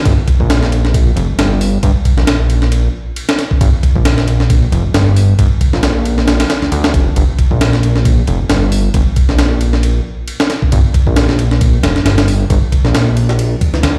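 Breakbeat with a funky, swaggering strut, this excerpt rides at 135 BPM in G minor with a 56% swing on the sixteenths. A gritty, compressed sampler-style drum kit with a thumpy kick, a high-tuned snare, hi-hat and ride cymbal sits up front alongside a fat analog bass, its detuned sawtooth and triangle tones wave-folded and shaped by a filter sweep, holding low between F1 and D2. Both parts play from 0.1 to 14.0 seconds in a large studio reverb that suggests a big sound system in a bare room.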